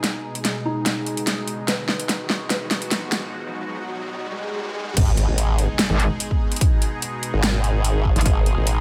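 A soft, mellow, felt-muted upright piano melody with audible action noise opens this heavy, menacing excerpt of half-time wobble dubstep at 146 BPM in G# phrygian, over a lush supersaw pad with phaser and a tape-warm dubstep drum kit with a huge snare, as piano and pad both sweep through a low-pass filter during a build-up that breaks at 3.3 seconds while a background riser and swell gather, until the drop at 5.0 seconds brings an impact, a punchy electronic kick and an up-front formant-sweep wobble bass, soon joined by an aggressive, distorted metallic FM wobble bass.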